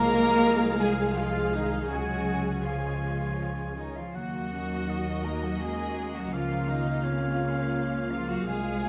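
In a rubato three-beat sway, this longing, bittersweet cinematic excerpt gives the melody to a veiled, muted symphonic violin section. Second lines come from a clear oboe, an airy concert flute with crisp attack, a mellow clarinet and a con sordino studio violin section, while a lush studio viola section accompanies, a distant French horn section holds dark sustained chords, a ringing fingerpicked harp spins arpeggios, and close cello and smooth-topped double bass sections carry the bass inside a wet recital-hall reverb.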